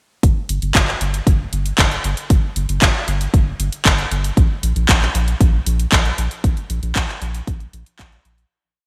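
Italo disco in G minor at 116 BPM, bittersweet yet danceable: a round, deep, nasal analog bass drives eighth notes between G1 and Bb1 beneath an overdriven, punchy four-on-the-floor electronic kick with studio reverb and an up-front house kit of handclaps and bright closed hi-hats treated with gated reverb, all set in a light digital ambience of 1980s-style production before the short piece fades out from 5.8 to 8.5 seconds.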